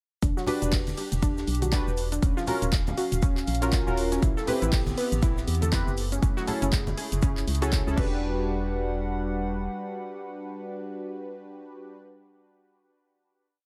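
A four-on-the-floor electronic kick sits up front at 120 BPM with a 58% swing on the 16ths, joined by dark programmed hats, claps, rim clicks, shaker and crash from a deep house kit, soft syncopated congas in the background, and a very quiet, smooth acoustic breakbeat with snare, all in a small room. This warm, moody deep house piece in E minor moves through Em9, D#m9, Am9 and F#m9 chords, carried by a hollow, flute-like pad, a warbling, lo-fi pluck arpeggio with chorus and delay, and a percussive, organ-like FM bass in a dotted rhythm, each pumping against the kick. The drums drop away after about 8 seconds and the bass follows shortly before 10 seconds, leaving round, detuned analog key stabs with phaser and dub echo to ring with the pad until 12.0 seconds during the final hit.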